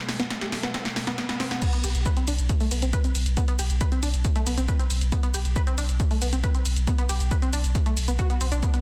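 A layered electronic kick drives this hypnotic, dark peak-time techno excerpt at 137 BPM in B phrygian, punchy and high-pass filtered, entering at 0.3 seconds. A tight sequenced synth riff of detuned sawtooth and square waves with a filter pluck runs throughout, shaped by chorus, tube saturation, tape echo and sidechain pumping. The opening build-up brings a drum fill, a very quiet riser and a filter sweep on the synth, while a deep, moody pad drones briefly in the background with built-in reverb before the drop at 1.6 seconds. From 0.1 seconds an analog drum machine re-recorded in a small room adds snare, hi-hat, ride, crash and shaker, its hats, cymbals and percussion pumping with sidechain, and from 1.8 seconds a round sine sub bass holds a low B through a low-pass filter and sidechain pumping. The mix is dense and heavily limited, with light reverb.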